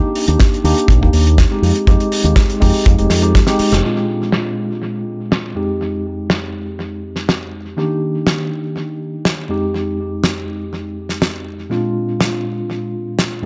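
A mellow tine electric piano opens this sleek, groovy nu-disco passage at 0.0 seconds, sitting up front with a clean tone through its built-in speakers, shaped by sidechain pumping, a low-pass filter and analog delay as it moves through rootless Cm9/Eb and Fm7 voicings in F dorian. At a straight 122 BPM in 4/4, a damped 70s drum kit joins with low-passed hi-hat and a fat, dry snare in a small, filtered room, while a tight, polished kick and a fingered electric bass with an envelope filter drive the opening bars. A drum fill and a band accent close this first stretch, and the kick drops out at 3.5 seconds, followed by the bass at 3.8 seconds. From there the electric piano carries a filter sweep across a Bb9, Fm7 and Ebmaj7 progression, with the hi-hat and snare continuing beside it. Light reverb and plentiful echo give the mix an echo-heavy character in this short cut from a longer piece.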